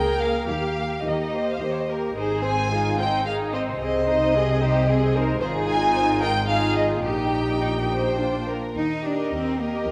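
Bathed in the long, wet reverb of a scoring stage, this lively, graceful classical-period movement for string orchestra sways in 3/4 at 104-114 BPM with a rubato feel, its up-front first violins singing a rich, vibrato-laden melody above a focused, distant second violin line, prominent even-toned violas with a smooth top, a close cello bass set in the background and an intense double bass, as the harmony turns from Ab major to Eb major at 5.4 s in this fragment cut from a longer piece.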